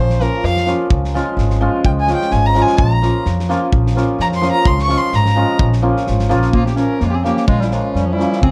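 A dark, lightly reverberant mix carries this fiery, virtuosic Balkan wedding-band fragment in Bb minor at 128 BPM in a swung 2/4, where an earthy, bowed violin with light vibrato solos from the start until 6.5 seconds over shimmering, ringing hammered dulcimer, woody pizzicato upright bass and a punchy small-room drum kit of kick and snare, before a clear, close-miked clarinet enters in classical style at 6.5 seconds to take the melody.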